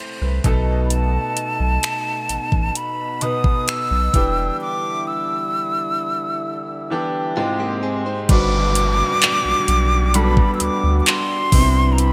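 Contemporary R&B at a slow 65 BPM in G major, this romantic, smooth fragment of a longer piece sets a clear grand piano with lush chorus over sustained chords from a mellow French horn section, a deep, round sine sub bass and an up-front trap kit whose knocking kick, metallic hats, finger snaps and handclaps carry gated reverb. A breathy, hollow silver flute with vibrato and digital delay sings the close-miked melody high above, while a bright, direct-recorded clean electric guitar adds brief compressed arpeggios from 7.4 s to 8.5 s as the break draws to a close, where an Abmaj7 chord arrives. An electronic downlifter enters at 8.3 s as the harmony moves to Gmaj7 and then Cmaj7, framed by a bright 1980s-style digital production and a light small-room ambience.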